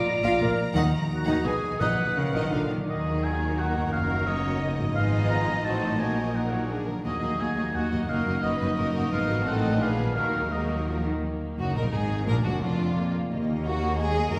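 A stormy, urgent romantic movement for orchestra in Eb minor at a fast 173 BPM in 3/4 opens with a focused, lush symphonic violin melody over ringing, fingerpicked harp arpeggios, a soft-attacked clarinet line and articulate hard-mallet timpani that both fall away early, as expressive chamber violins, smooth background violas, distant cellos and rich double basses join beneath, and a clear oboe with light vibrato carries a second line from 2.9 to 10.9 s, in a wet scoring-stage reverb heard from further back in the room.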